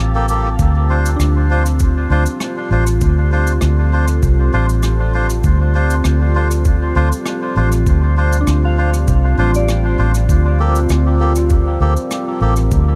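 A round, foam-muted electric bass sits up front in this deep, spacious ambient dub excerpt at 99 BPM in D minor, beneath a moody sawtooth pad holding sustained chords that move from Gmadd9 to Dm7 and back to Gmadd9 at 10.3 seconds. A reedy, nasal melodica plays stabs trailed by dub echo, while a soft FM synth bell warbles through arpeggios in the background, also with dub echo and chorus. Cabasa and rim click played with brushes enter at 0.3 seconds, and a muffled, thumpy electronic kick follows at 0.6 seconds, just as a faint, wind-like tuned noise texture ends, all in light studio reverb.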